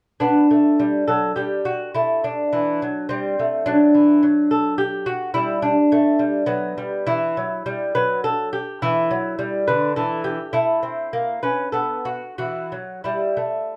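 Classical baroque-style dance in triple metre, radiant and flowing, with a solo lute playing alone from 0.2 to 13.8 seconds: its delicate fingerpicked nylon double strings, some doubled at the octave, sit up front with rubato phrasing, while light reverb and a dark, warm production round out this short excerpt.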